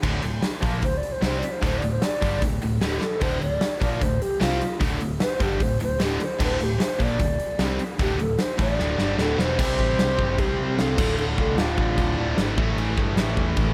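Set in a small room with a punchy, up-front arena drum kit ringing with bright cymbals, this aggressive, heavy hard-rock passage in D minor drives along at 151 BPM in a straight 4/4. Three guitar riffs form the backdrop: a cranked stack guitar with overdrive and phaser, a tight distorted guitar, and a very quiet double-tracked distorted guitar. A growly, amped picked bass grinds beneath them. An airy, close-miked alto flute with vibrato and slapback echo takes the melody from 0.8 s, and at 9.6 s, after a drum fill, an octave-fuzz lead guitar adds a second line in the background as the harmony shifts.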